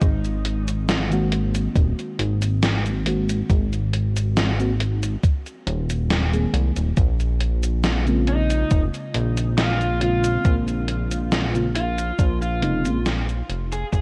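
A hazy, melancholic vaporwave fragment moves at an unhurried, straight 4/4 pulse, cut from a longer piece and carried on the soft blur of cassette tape with little reverb. An up-front, thumpy electronic kick sits under a gated 80s digital drum machine whose snare, hi-hat and cabasa ring out through gated reverb, both sampler-style and tape-warm. A glossy, chorused synth bass built from pulse and sawtooth waves gives each note a quick filter pluck before sustaining, holding the low end from the start. From 1.1 seconds a mellow FM electric piano adds round, full-bodied, dark chords over Ab9 moving to Bbm9, coloured by phaser, analog chorus, analog delay and a touch of 12-bit sampler grit. At 8.3 seconds a picked lead guitar through a small cranked amp enters with an overdriven, shadowy line treated with tape echo, a few seconds before the music begins to fade out from 11.6 seconds.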